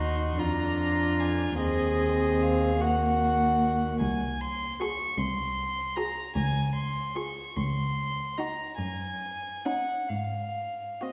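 A string quartet enters together in a slow, lyrical romantic movement in 6/8, its uneven beats stretched by rubato. Up front, a warm first violin carries the floating melody sul tasto with a soft, airy bow, while a second violin of rich, pure tone holds a lower line, the viola adds intimate accompaniment with light vibrato, and a clear, nasal cello anchors the bass. The players sit at a distance in a reverberant recital hall, and the passage is cut from a longer piece, ending at 11.1 seconds.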